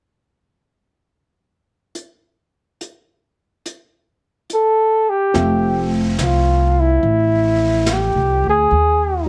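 Heavily compressed, radio-like sound with a light reverb frames this tender, late-night jazz ballad excerpt in F major, swinging gently at 71 BPM in 4/4. Dark, smooth brushed drums open at 1.9 s, and a mellow, vintage-toned flugelhorn enters up front at 4.5 s to carry the solo melody with vibrato and scooped notes. At 5.3 s a woody pizzicato upright bass and a warm grand piano in the background join over an Fmaj9 chord, which shifts to Ebsus4 near the end.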